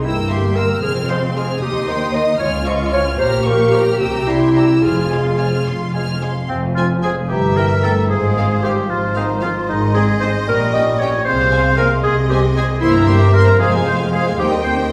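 Bathed in the lingering reverb of a recital hall, this playful, sneaky film cue in 6/8 sets a rich violin section on the melody above a second violin section, a clear clarinet and an oboe on second lines, while violas and a bassoon accompany in the background, a dark French horn section holds sustained chords, lush cellos and double basses carry the bass, and a mellow, hollow small flute group joins at 6.5 seconds.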